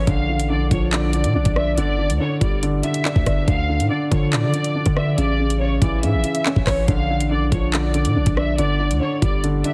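Strings, piano and 808 bass open this ominous, menacing drill excerpt together, at 141 BPM in 4/4 with a half-time feel. A biting studio violin section carries the melody, bowed with light vibrato and an intense ensemble edge, softened by a low-pass filter and trailed by delay. Beneath it, a dark baby grand piano plays accompaniment with a mellow, boxy, intimate tone, short sustain and audible action noise. A deep, sine-like 808 bass with a fast attack and long decay anchors the low end, while the drill kit arrives at 0.1 seconds with a knocking kick, bright hi-hats, handclaps and rim clicks, all overdriven and pushed up front. The chords cycle through Bb, G5, Dm and A before returning to Bb and G5. Light reverb and heavy multiband compression give the whole piece a dense, radio-ready sound.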